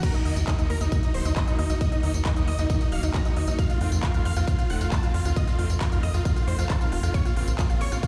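This excerpt of uplifting trance drops straight in at 135 BPM in a straight 4/4, with a huge, euphoric supersaw lead soaring over a punchy electronic kick from the first beat. The detuned, bright lead carries the melody between Eb4 and Bb5, pumping against the kick and trailing a tape echo. A round analog pluck sits in the background an octave higher, colored by chorus, a gritty 12-bit sampler edge and a dub echo. Beneath them, a lush, distant string section holds bowed ensemble chords with gentle vibrato, and at 0.3 seconds a tight, saturated sequencer bass arrives to drive the low end. A layered big-room kit adds crisp hats, handclaps, tambourine, ride and crash, giving the emotional progression from Ebm through F7 to Bbmadd9 a polished, tape-tinged punch. The whole mix sounds as if played through a big sound system in a bare room, bathed in large studio reverb and digital ambience.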